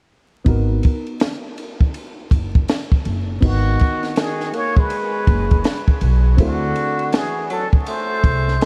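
Jazz-hop excerpt with a mellow, nocturnal mood and a swung feel, where a woody pizzicato upright bass and a punchy, up-front cocktail drum kit with a high-tuned snare sit over a dark, vintage grand piano in the background, and at 3.4 s a plunger-muted trumpet with wah-wah and scooped notes, distant and whispered in a diffuse delay, takes the melody alongside a close-miked, subtone tenor saxophone, all within a small-room ambience and vinyl crackle.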